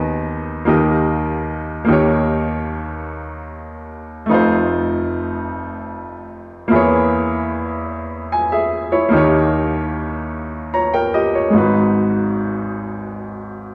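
Soulful and fervent, this short gospel excerpt runs about 13.7 seconds at a slow 50 beats per minute, counted in dotted quarters in a straight 6/8 and set in G# minor. A baby grand piano carries the whole piece alone, its tone clear, open and up front, reaching from a deep F1 in the bass to A#5 at the top. The harmony opens on G#m over D# and dwells on dominant colour through D# and D#7, then moves to F7 and a half-diminished A#m7b5 over E before returning to D#7. At 11.5 seconds a new section begins, settling onto a G#m7 chord as the passage closes. A moderate large-studio reverb gives the piano a sense of space, and the production is dark and warm.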